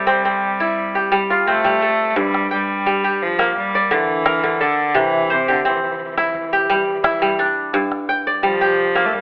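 Flowing and hypnotic, this short cut from a longer West African traditional piece for strings and percussion moves at 86 BPM in G dorian, alternating between C and G minor chords. A ringing, crisp fingerpicked kora spins arpeggios up front, while a single bowed cello carries the melody with a biting, earthy tone and a smooth top. A deep, close calabash joins from the background at 2.2 s. The whole recording has a telephone-like sound, set in a moderate recital hall reverb.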